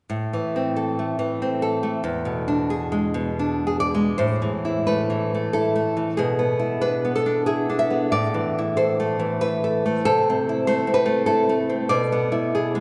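A fingerpicked nylon-string guitar plays up front and alone in this passionate, melancholic romantic classical piece in A minor, cut from a longer work, moving in a rubato 3/4 between 73 and 99 BPM over A minor and E7 harmonies, its warm acoustic tone ringing from low E2 to high E5 through a long, wet cathedral reverb in a church or concert-hall space until it ends at 12.8 seconds.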